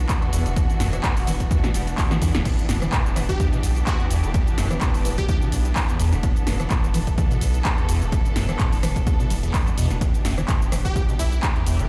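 A swung 127 BPM acid house groove in 4/4 opens this raw, playful cut, built on an up-front, punchy electronic kick and an analog drum machine of snare, handclaps, hi-hat, rim click, shaker and crash, with a drum fill at 2.1 seconds, all re-recorded in a large room. A squelchy, resonant square-wave acid riff with filter sweep, phaser, overdrive, delay and gritty 12-bit sampler character sits in the background over a deep, saturated triangle sub bass, while a distant, lush bowed string section holds sustained chords, opening on Em7; strings, sub and acid line all pump against the kick. A bright, detuned sawtooth unison lead with tape echo and phaser plays a catchy phrase from 3.3 seconds and returns briefly at 10.9 seconds, all inside a big, reverberant digital space.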